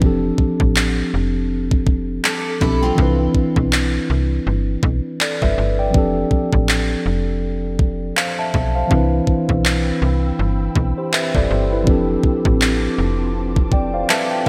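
This dreamy, romantic contemporary R&B excerpt moves at 81 BPM in 4/4 with a swung sixteenth-note feel, alternating between F6 and Cmaj7 chords. A mellow tine electric piano carries the harmony up front, joined by a snappy FM bass with a metallic, quickly decaying attack and a trap drum kit whose knocking kick and handclaps sit in gated reverb. A picked steel-string acoustic guitar adds brief chorused, delayed arpeggios from 2.2 s and returns at the very end. An ethereal, airy pad with ensemble chorus and a slow attack enters at 9.8 s to hold sustained chords above the groove. The electric piano plays a short fill at 13.7 s. The whole mix has a bright 1980s-style digital sheen inside a lush hall reverb.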